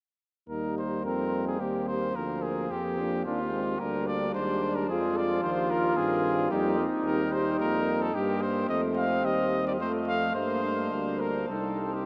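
Triumphant and stately, this classical brass quintet excerpt moves in a flexible, rubato triple metre, with a warm trumpet singing the melody up front over a smooth-topped flugelhorn second line, a distant French horn in the background, a mellow trombone with light vibrato and a clear, soft-attacked vintage bass trombone, all five sounding together from 0.5 to 12.1 seconds within a vast, echoing space of huge reverb.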